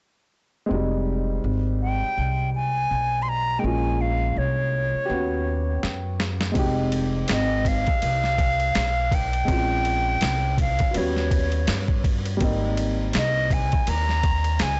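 Jazz-hop hip hop at 82 BPM in F minor with a swung 16th feel, nocturnal and cool, where a dark, mellow upright piano with audible action noise and a woody pizzicato upright bass open at 0.7 seconds, a breathy, close-miked silver concert flute with slapback echo carries the melody from 1.8 seconds, and a gritty, pitched-down boom bap sampler-style drum kit with a thumpy kick arrives on a drum fill at 5.8 seconds, set within a small room sound on a blown-out, overdriven recording whose highs are cut off, in a passage taken from a longer piece.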